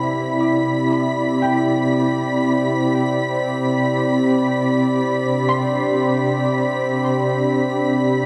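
Ambient in free time and C major, this serene, peaceful fragment from a longer piece rests on a single Cadd9 chord for its 8.3 seconds. A bright, detuned sawtooth pad sits up front with soft-attack sustained chords treated with chorus and tremolo, while a felt-muted upright piano plays mellow, intimate arpeggios with delay in the background and a lush bowed violin section adds a focused, vibrato-rich texture high above. The whole is bathed in a wet cathedral reverb with a 5.6-second decay, giving the dark, warm production a soft, enveloping glow.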